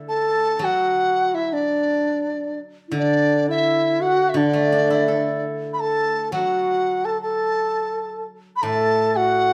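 A large dizi carries the melody up front, its mellow, hollow bamboo tone edged with a buzzing membrane and shaped with vibrato and tongued notes, even as a distant quality lingers around it. This is Chinese traditional music for a small chamber ensemble, pastoral and festive in mood, moving at 84 BPM in a straight 2/4 and set in the D gong mode. A steel-string zither begins the accompaniment at 0.0 seconds, played with fingerpicks and giving off a ringing, silvery sound in the lower register beneath the winds. From 0.1 seconds an end-blown xiao joins the dizi as a second line, also up front, with a bright, airy tone, a soft attack and expressive vibrato below the melody. A light reverb gives the trio a sense of space through this short passage, which is cut from a longer piece and runs to 9.5 seconds.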